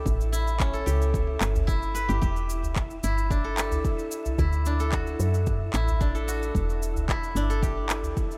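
Earthy and hypnotic, this organic downtempo fragment moves at 111 BPM in E dorian, with a silvery steel-string zither ringing out fingerpicked arpeggios through delay over a round, woody FM bass placed up front, a deep overdriven electronic kick, electronic cabasa and handclaps, a deep udu entering at 1.6 seconds, and an airy, wind-like tuned noise texture breathing softly in the background, all cycling through A7, Em7 and Dadd9 within a digital ambience.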